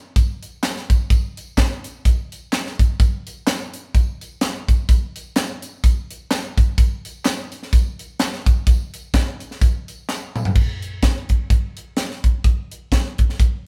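Jubilant and uplifting, this gospel groove swings at 127 BPM in 4/4, led by a crisp, airy fusion drum kit with a high-tuned snare, punchy kick, hi-hat, crash and toms sitting up front, while tambourine, maracas and group handclaps stay in the background until 10.5 seconds, just as a drum fill from 10.1 seconds carries the band, playing live in one room with light reverb, into a brief final section where the drums continue alone.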